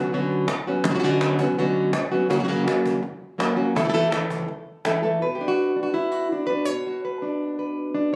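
A fingerpicked flamenco guitar sits up front and carries the melody from start to finish, its acoustic tone warm as it ranges from F#2 up to C#5. This dramatic, mournful flamenco fragment, cut from a longer piece, moves in a straight 4/4 and is tuned to A4 = 444 Hz. A woody cajon with faint snares enters at 0.3 seconds and drops out at 5.0 seconds, sounding distant, as if set back in a large room. The harmony moves through Bmadd9, F# and A5 before settling on Bm as a new section begins at 5.2 seconds. Captured on a phone in the room, the recording has a club-like ambience and a moderate studio reverb around the playing.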